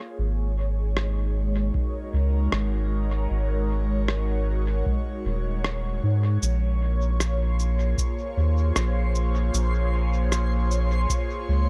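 Spacious and meditative, this ambient dub fragment moves at 77 BPM in 4/4 with a loose sixteenth-note swing, cut from a longer piece. An airy, breathy pad opens at the start with sustained, slow-blooming chords treated with chorus and phaser, while a soft, round sub bass enters almost at once and sits up front as the harmony moves from Ab9sus4 to Bbm9 at 6.4 seconds. A muffled, pitched-down rim click and cabasa arrive at 1.0 seconds, their sampler-style hits trailing off into dub echo, and a dry, deep electronic kick joins shortly after. At 7.5 seconds a reversed, granular texture swells in high and bright in the background, dreamy and detuned inside its own reverb. A light digital ambience surrounds the mix, keeping the sparse groove hushed and open.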